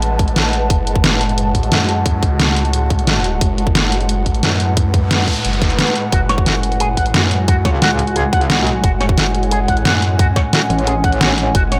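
This excerpt of dark, technical drum and bass opens on a swarming, warbling drone holding sustained chords and an airy, breathy pad, both pumping against the beat, while a thick, swirling detuned saw bass growls low under phaser and overdrive. At 177 BPM in F# minor, the mood is tense and dark, settling on an F#madd9 harmony. A dubstep kit of hi-hat and deep snare with a roomy, produced sound plays from the start, and a tight electronic kick sits up front from 0.2 seconds. A background noise sweep passes through at 5.0 seconds, and at 6.1 seconds a bright, twangy electric guitar with an envelope filter picks out clean arpeggios, roughened by 12-bit sampler grit and trailed by tape echo. From 7.7 seconds an aggressive, metallic wobble bass with chorus pushes forward, adding an FM bite to the low end under a light overall reverb.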